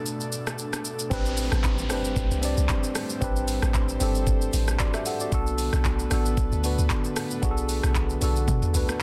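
A swung sixteenth-note groove at 114 BPM in 4/4 drives this hypnotic, deep amapiano clip in A dorian, cut from a longer piece. The electronic R&B drum kit sits up front with a knocking kick, metallic hats, handclaps, rim clicks, shaker and toms, carrying a small-room character. A worn, slightly out-of-tune tine electric piano plays close and clean accompaniment from the opening Bm7. Behind it, a breathy, detuned pad holds soft sustained chords with chorus and sidechain pumping. At 1.1 seconds the drop arrives on Am11 with a round, dark FM log drum bass whose fast attack decays, while a faint electronic downlifter runs in the background until 5.3 seconds, when the harmony returns to Bm7. The dense, heavily limited master wraps the parts in a digital ambience.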